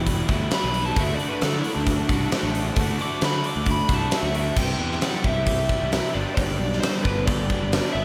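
A big arena-sized sound with moderate lush hall reverb carries this brooding, driving classic rock piece at 133 BPM, where a lead guitar through a small cranked amp, with overdrive and slapback echo, solos for the first 4.6 seconds over Em and Dadd9 before the harmony moves to C and G, backed by a bright, crunchy guitar riff with its own slapback, a dark, compressed overdriven guitar riff set in the background, a fuzz-laden fingered bass, a very quiet, clean tonewheel organ holding sustained chords with key click and slow rotary, and an up-front acoustic drum kit with a fat snare and punchy kick.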